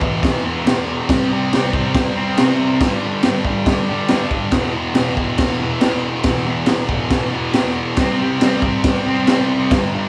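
A thick, bright fuzz guitar riff and a raw, boomy garage drum kit start together at 0.0 seconds in this swaggering E minor garage rock fragment at 139 BPM in a straight 4/4. The double-tracked, picked guitar sits up front, moving through E5, C5 and G5 power chords, while the acoustic kit's high-tuned snare, crash cymbal and gritty, saturated sound pump in a small room with a rolled-off top. A moderate studio reverb frames the pair; the drums stop at 9.8 seconds, just before the guitar ends at 10.1 seconds.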